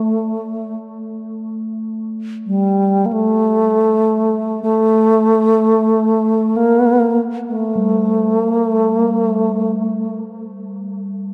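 Wet church reverb and a dark, warm production surround this short free-time meditation piece in a meditative world style. It is haunting, tuned to A4 = 441 Hz, and cut from a longer work. Up front, a bright, reedy bass flute carries the low melody with airy, tongued notes, vibrato and a diffuse ambient delay. Behind it, a bronze singing bowl struck with a suede striker gives a brief metallic ring in a boxy small room, then returns at 7.8 seconds with slow beating and keeps sounding after the flute stops at 10.2 seconds.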